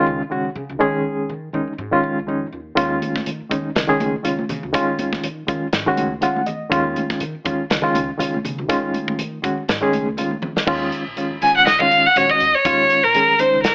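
Heard through a thin AM-radio filter with moderate studio reverb, this intense, nocturnal fusion excerpt swings at 122 BPM in Eb minor, with a barky, reedy electric piano up front, lightly overdriven with fast tremolo, and a dark, woody pizzicato upright bass sitting in the background. A tight, small-room drum kit arrives at 2.8 seconds, joined at 3.0 seconds by ringing, high-tuned congas played with hard hands, and the piano takes a short fill before a drum fill leads into a shift to Eb dorian. At 11.4 seconds a rich, focused solo violin enters up front, bowed with vibrato and a slightly boxy tone, carrying the melody over an Eb9sus4 chord.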